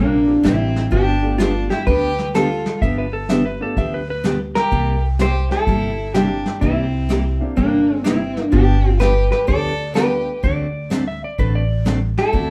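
Swinging and down-home, this short western swing excerpt puts a dark, compressed hollow-body jazz guitar up front on the melody over thumpy gut-string upright bass, a picked steel-string acoustic guitar, a boxy upright piano in the background, a clear fiddle with light vibrato on a second line, and a warm brush kit with a punchy kick, while a clean lap steel slides in with fingerpicks at 2.8 and 10.4 seconds, all captured as a band playing live in a small room.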